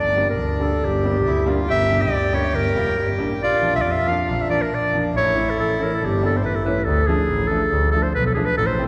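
Bittersweet and soulful, this short klezmer passage moves in a straight two-beat metre and is cut from a longer piece. A clear clarinet in classical style carries the solo melody up front, while a reedy, dark accordion plays a smooth second line until about 6.8 seconds. Below them, a single bowed double bass sounds rich and focused, with vibrato and a smooth top, sitting prominently in the mix. A woody, open upright piano enters at 0.2 seconds with accompaniment. The harmony moves from G minor through B-flat and A before settling on D minor as a new section begins at 6.9 seconds, all set in the long, wet reverb of a church or concert hall.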